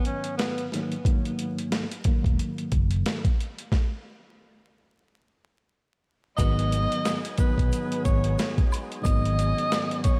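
A swung boom-bap groove in 4/4 drives this dark, tough hip-hop excerpt, built on a gritty, compressed sampler-style drum kit with a thumpy kick and medium-tuned snare sitting up front. A mellow tine electric piano carries the chords from the start with a clean, cassette-tinted tone. A breathy tenor saxophone offers a brief whispered phrase before returning at 6.4 s for an intimate, jazz-style solo with vibrato and tape echo. A round, amped fretless electric bass enters at 2.2 s, and after a stretch where the harmony drops away, the second section brings in a thick, lightly overdriven tonewheel organ through a slow rotary speaker, a lush, distant string section stab, and a tube shaker and woodblock in the background. Vinyl crackle and light reverb lend the piece a dusty patina.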